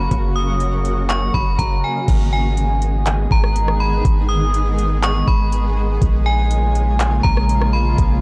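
A dry, gritty cassette-tape sound frames this hazy, spacious cloud-rap excerpt, which moves with a half-time hip hop feel. A long, deep 808-style bass sits up front, its sine tone striking quickly and then decaying mellowly beneath a shimmering ambient pad that holds ethereal, wave-folded chords through chorus, built-in reverb and sidechain pumping. Above them, a metallic FM bell carries the melody with an inharmonic, ringing brightness, colored by chorus, a low-pass filter and tape echo, while a very quiet granular texture adds faint sparkle. The electronic R&B drum kit enters at 0.1 seconds with a knocking kick, metallic hi-hats, rim clicks, handclaps and crash cymbal, all pushed through overdrive. The harmony moves from F# to G#m at 2.1 seconds and settles on A#m7 at 6.0 seconds.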